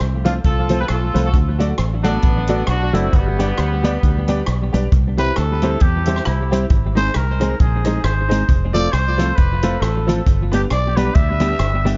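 A raspy, growling trumpet takes over the melody at 5.2 seconds for a gritty solo with light vibrato, following a tight, vintage horn section that carries the tune until 4.5 seconds, both touched with tape echo. Beneath them, this joyful, upbeat ska excerpt swings along on a roomy big-band drum kit with a punchy kick and rim clicks, a round, foam-muted fingered bass up front, and a clean, compressed electric guitar with subtle chorus. A woody, slightly detuned upright piano adds stabs in a small room, and the whole production sounds dark and warm.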